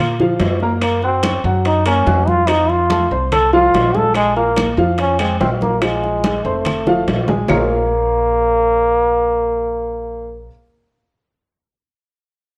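Fiery and sultry, this Afro-Cuban jazz passage puts a clear, vintage solo trombone up front over an intimate baby grand piano with audible action noise and a thumpy, woody pizzicato upright bass, while thick-skinned background congas, very quiet round bongos, ringing distant timbales and woody background claves drive the groove until a fill at 6.7 s and drop out at 7.6 s, leaving the trio to close out under a worn, warbling cassette-tape drift and a large studio reverb.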